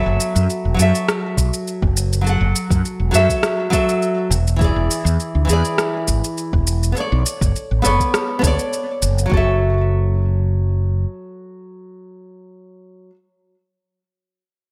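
A bright, fingerpicked nylon-string guitar with audible finger squeak and digital delay sits up front in this smooth, relaxed sunset chillout excerpt, carried by a dark, round fretless bass with analog chorus, a soft, tape-warm electronic kick, and a layered, overdriven electronic shaker and rim click, all inside a moderate plate reverb and 1980s-style digital production, as the chords move from F#m7 through E7 and Bm9, the drums fall away by 9.4 seconds, and the bass stops at 11.0 seconds, leaving the guitar alone until the cut at 13.2 seconds.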